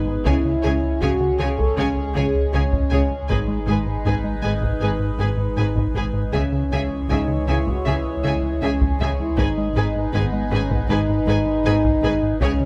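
Tense and vast, this cinematic hybrid orchestral and electronic film score moves at 79 BPM in C# minor, shifting between C#m and G#m, as a lush, distant violin section carries the melody over a second violin line, viola, cello and double bass, while mellow French horns and a swirling analog pad with phaser and chorus sustain chords, a deep sine sub bass and a rubbery square-wave bass riff anchor the low end, a heavy taiko ensemble drums in the background, and a very quiet felt-muted upright piano adds faint texture, all captured with close, detailed microphones and light reverb.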